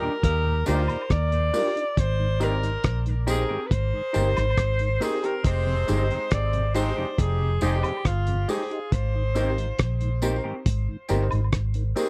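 Sweet and tender, this lovers rock reggae excerpt moves at an unhurried 69 BPM in straight 4/4, drifting through Ebmaj7, Abmaj9 and Fm9 chords. A clear alto saxophone carries the jazz-style melody up front with vibrato and a tape echo that lends it a distant, roomy air, while a horn section with light vibrato plays a loose second line until 8.0 s. Underneath, a mellow tonewheel organ sits in the background with chorus vibrato and a slow rotary speaker, and an electric guitar through a small old amp adds slightly broken-up, phased stabs. The muted fingered bass is dark, round and punchy, and the cloth-damped drum kit thuds close and prominent with a tight kick, hi-hat and rim click, its gritty, muffled tone rolled off at the top. A concert grand piano with deep bass and long sustain enters at 0.7 s with slapback echo, joined at the same moment by tambourine and woodblock. The recording is dry and close in a 1970s studio manner.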